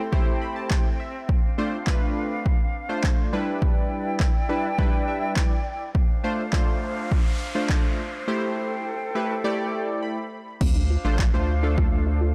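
Confident and driving, this 103 BPM dance-pop excerpt in D dorian opens with a breathy, vibrato-tinged small flute group holding sustained chords over detuned sawtooth analog keys with chorus, both pumping against a punchy, up-front house kit of kick, handclaps and crash cymbal, as the harmony moves from Am7 through Dm7 and Em7. A noise sweep enters at 6.4 s, leading into a break at 8.3 s with fills from the keys. At 10.6 s a deep, round analog bass and a soft background pluck arpeggio with dub echo arrive on Dm7, all set in a dark production with light digital ambience.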